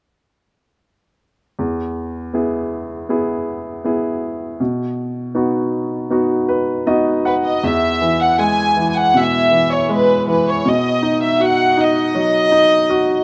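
A reedy, gut-string chamber violin section carries the melody from 7.3 seconds in this tender, hopeful pop excerpt at 80 BPM in E major, set over a clear, open baby grand piano accompaniment that begins at 1.6 seconds and slips in a fill from 6.1 seconds, all bathed in a moderate plate reverb within a rough home demo mix.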